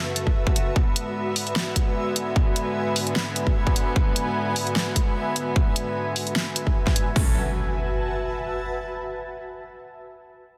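Heavy wobble dubstep at 150 BPM in F# minor, this menacing excerpt moves in a half-time feel with a light swing on the sixteenths. A dark chamber string section holds bowed chords from F#2 to A4 with a nasal, reedy gut-string tone, pumping against the sidechain. Above it, a granular cloud pad drifts from F#4 to A5, blurred, detuned and bright, with a slow attack, long release and its own built-in reverb. Two up-front drum kits drive the groove: one brings an overdriven, huge snare with hi-hats, while the other adds a punchy kick and crisp hats with a tape-warm character re-recorded in a large room. The harmony moves from F#m to G#dim before returning to F#m at 7.2 s, where an up-front electronic impact lands and rings until 8.8 s. The master is dense and heavily limited, with a light reverb.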